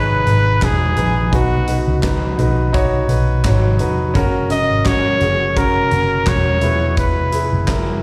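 Piano-driven pop at 85 BPM with a light 16th-note swing, this driving, bittersweet excerpt, cut from a longer piece, sets a clear, up-front trumpet melody with light vibrato over a concert grand piano whose deep bass, long sustain and audible action noise sit close and intimate, both carrying plate reverb and slapback echo. Underneath, a dark, foam-muted picked electric bass gives a round, punchy low end, while a huge arena drum kit, entering at 0.3 seconds, adds a fat snare, punchy kick, hi-hat and handclaps. The chords move from G#m to B, F# and E, and the whole performance sounds like a live gig heard through a venue's PA in a club room.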